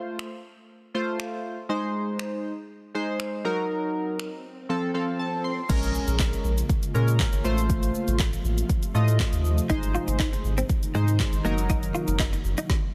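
Glossy, chorused retro synth keys pumping against the sidechain open this bittersweet yet confident 120 BPM dance-pop excerpt in Bb minor, quickly joined by an up-front deep house kit with a deep kick, woody snare, dark hats, snaps, claps and shaker, before a very quiet swell leads into the round analog bass and a very quiet impact at 5.7 seconds, an ethereal, airy pad sits in the background from 6.4 seconds, and a clean, direct-recorded electric guitar riff arrives at 9.7 seconds.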